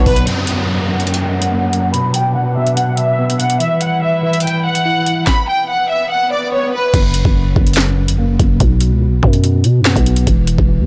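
Drill hip hop in a half-time feel, cold and ominous, cut from a longer piece and played through a blown-out, overdriven recording with light digital ambience. A lush, bowed violin section carries the melody with smooth vibrato up front through a low-pass filter and delay until 6.9 seconds. Beneath it a mellow tine electric piano plays clean accompaniment through built-in speakers, while a biting, earthy chamber string section holds sustained chords in the background until 5.3 seconds. The electronic drill kit knocks hard up front with a sharp, soft-clipped snare, metallic hi-hats, finger snaps and crash cymbal. Alongside it, an electronic downlifter and filter sweep run until 6.9 seconds, joined by a swell from 5.6 seconds. From there the growling, buzzy 808-style bass takes over the low end with fast-attack, decaying notes, driving the closing section over chords moving from F# to B5.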